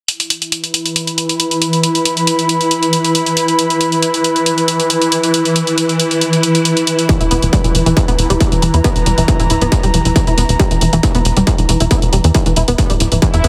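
Heavily compressed with a radio-like sheen and light digital ambience, this intense, industrial slice of driving peak-time techno opens with sidechain-pumped hi-hats, an airy, breathy pad shimmering with chorus, and a swarming, detuned drone drifting through phaser and granular haze, until at 7.1 seconds a distorted kick lands up front alongside a punchy sawtooth sequencer bass and a tight, detuned synth riff carrying chorus, phaser and dub echo, with a brief electronic swell arriving at 13.3 seconds.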